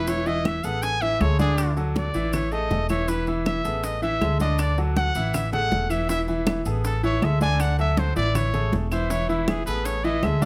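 A straight four-four salsa pulse drives this joyful, festive passage cut from a longer piece, with congas, bongos and maracas entering at 0.1 seconds and claves joining at 0.5 seconds. Up front, a punchy trumpet carries the melody as a solo throughout, its bright, pop-style tone coloured by vibrato. A brilliant grand piano, polished and intimate with audible action noise and long sustain, supplies the accompaniment, while a woody, warm pizzicato upright bass with steel strings sits up front beneath it. In the background the congas play with hard hands on damped, thin skins and the maracas give a grainy, mellow rattle, while the round, low-tuned bongos and the claves sit very quietly, all of the percussion close and dry. The harmony moves between E, D and A5, with a single Amaj7 at 8.4 seconds, and a light reverb lends the mix a touch of space.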